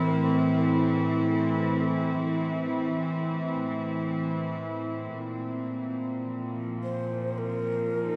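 A slow, straight 4/4 pulse at 53 BPM underpins this cavernous, ominous dark ambient drone, tuned slightly flat to A4 = 435 Hz. Up front, a bowed chamber cello section sustains nasal, reedy gut-string chords in period style, moving from Am to a rootless D#sus2 at 5.1 seconds. Behind it, a breathy, hollow shakuhachi traces a narrow melody with vibrato and tongued chiff, set in tape echo, and the whole fragment is bathed in a huge, dark reverb.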